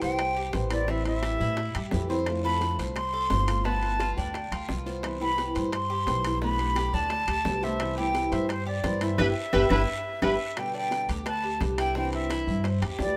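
This Cuban son and guajira excerpt moves at a brisk 174 BPM in straight 4/4, keeping a relaxed, warm mood in C major. A breathy silver concert flute carries the melody up front, close-miked with a straight, tongued, expressive tone. Beneath it, a fingerpicked flamenco guitar with audible finger squeak and a Cuban tres picking metallic double-string arpeggios fill out the harmony over changes such as Cmaj7, Am7, F6 and G7. A thumpy, dark pizzicato upright bass sits prominently, while ringing metal-shell timbales, tight high-tuned bongos, woody claves and a raspy guiro keep dry, close percussion in the background. At 9.2 seconds the band hits an accent, and a distant, roomy trumpet with light vibrato and scooped notes adds a brief second line before a drum fill leads into a new section at 10.6 seconds. A moderate plate reverb lends the blend a warm, gentle glow.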